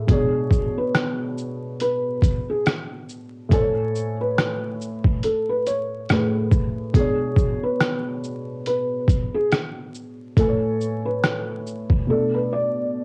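A muffled, pitched-down sampler-style trip hop kit sits up front, compressed and overdriven, with a thumpy kick, hi-hat, rim click and shaker, all colored by cassette tape and dropping out at 12.1 seconds. Two felt-muted upright pianos carry this melancholic, reflective lo-fi hip hop fragment. One plays soft, intimate chords with short sustain, while the other offers a dark, thick-felt melody, both with audible action noise and dulled by a low-pass filter over a swung Bm69 to Amaj7 progression. Light reverb, vinyl crackle and a homespun cassette quality frame this brief cut from a longer piece.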